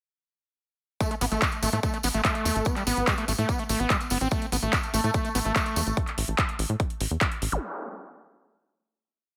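A punchy, overdriven psychedelic trance piece at 145 BPM in straight 4/4, hypnotic under light reverb, where a four-on-the-floor electronic kick, a big-room dance kit with metallic hats and claps, and jingly hand-played tambourine sixteenths run alongside a tight, dark, galloping sequencer bass from 1.2 seconds, while a squelchy, screaming acid line with accents and slides runs through distortion, chorus, digital delay and sidechain pumping, a bright, pulsing gated drone on A3 enters at 4.6 seconds, and an electronic zap closes the groove at 7.5 seconds.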